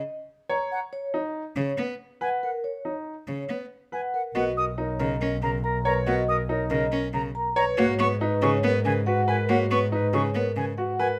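Bright and hypnotic, this minimalist classical pattern music moves at 140 BPM in a straight 4/4. Soft-mallet vibraphone carries a ringing, metallic melody over brilliant grand piano arpeggios and airy, distant flute arpeggios, while a focused, bowed cello adds accompaniment from 1.6 seconds. At 4.4 seconds a smooth clarinet second line and a rich, up-front bowed double bass join as the harmony moves from G#m through Bmaj7 to G#m9, all captured with close, detailed microphones and light reverb.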